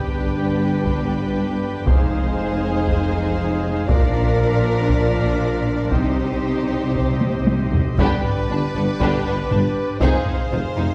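A close, dry taiko ensemble struck with heavy sticks drives this dark, epic orchestral film-score excerpt at 118 BPM, entering at 0.8 seconds beneath a smooth violin melody, a lush second violin line, violas, and rich cellos and double basses carrying the bass, while mellow French horns and a nasal cornet-stop pipe organ with tremulant hold sustained chords. Calf-headed timpani with medium mallets join at 5.9 seconds for a fill as the harmony moves from G through Fm7 and Bb to Cm, and the taiko adds its own fill before the phrase restarts. At 8.0 seconds a very quiet, distant trombone section, soft trumpet stabs and a punchy tuba thicken the texture, all set back in a roomy scoring-stage reverb.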